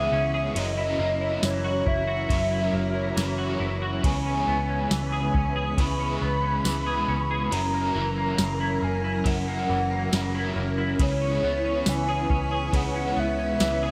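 Dream pop with a melancholic, hazy mood, where a hollow, woody clarinet-like synth lead carries the melody through chorus, phaser and delay over an overdriven semi-hollow guitar with tremolo, a bright organ-string ensemble holding sustained chords, clean compressed semi-hollow guitar arpeggios, a round foam-muted vintage bass and a soft, overdriven vintage rhythm box with deep kick, crisp snare, ride and tambourine entering at 0.6 seconds, all washed in a lush hall reverb with a big arena sound as the harmony moves between C#m7 and F#7.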